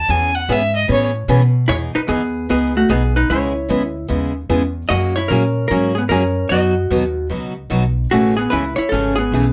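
A rich, smooth fiddle with light vibrato opens this playful, down-home country excerpt with a brief solo, over a woody, growly pizzicato upright bass and a bright, full-bodied picked dreadnought acoustic guitar, swinging at 149 BPM in E major. At 1.7 seconds the fiddle gives way to a dark, clean, compressed hollow-body jazz guitar carrying the melody through chords moving from Emaj7 through C#m7, F#add9 and B to Amaj7. Every part sits up front in a light reverb.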